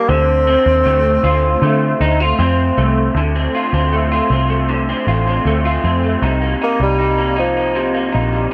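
A small room's light reverb frames this lonely, wistful bedroom-pop fragment at 78 BPM, cut from a longer indie pop piece, where a slightly broken-up, lo-fi electric guitar through a small old amp sits up front with analog chorus and a warbly pitch drift. A round, foam-muted vintage bass adds dark, amped weight beneath. A distant, mellow bassoon carries the melody with classical-style vibrato, softened by subtle chorus and tape echo, as the harmony moves from Dm7 to Cm7 at 6.2 seconds.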